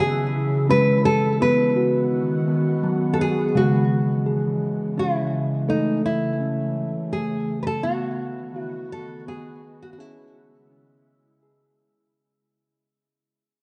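World meditative music with a hypnotic, meditative mood, moving in an unhurried 3/4 with a light swing. A steel tongue drum struck with firm rubber mallets carries ringing, bright arpeggios throughout, its tone round and pure. Over it, a fingerpicked nylon-string guitar sits up front with a deep classical voice, carrying the melody through a touch of delay, with audible finger squeak, before stopping at 11.4 seconds. Alongside them, a glassy FM pad with a slow attack and long release holds ethereal, mellow chords, thickened by ensemble chorus and its own reverb. The whole is bathed in a wet echo chamber reverb with studio ambience and a softened top end, and it begins fading out at 3.5 seconds as this excerpt drifts away from a longer piece.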